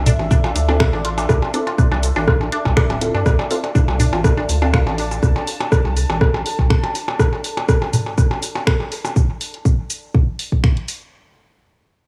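An echo-heavy, hypnotic mix with light digital ambience carries this sparse 122 BPM minimal techno cut, swung on the 16ths around a D7(no3) chord, as a punchy, up-front electronic kick runs from 0.3 to 10.7 seconds over bright house hats, finger snaps and shaker, and a tape-warm click kit of rim clicks, toms and blips treated with dub echo. A rubbery, hollow square bass pumps with sidechain until 6.7 seconds, while a juicy, squelchy blip pluck riff with phaser and dub echo plays until 5.0 seconds. A muted, very quiet dub chord stab sounds from 0.7 to 4.7 seconds, and a warbling, nostalgic lo-fi pad with chorus, phaser and built-in reverb sits in the background of this excerpt from a longer piece.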